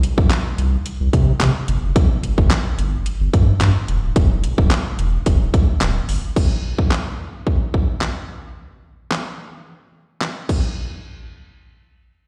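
Dance-pop cut from a longer piece, driving and energetic, heard as a live gig through the venue's PA with recital hall reverb. A deep, saturated sub bass with a thick triangle tone and sidechain pumping sits up front through the opening drop until 6.2 seconds. Alongside it plays a layered electronic kit of punchy kick, fat snare, metallic hi-hats, handclaps and crash cymbal with slapback echo. The kick falls silent at 9.7 seconds, and the drums stop at 10.6 seconds.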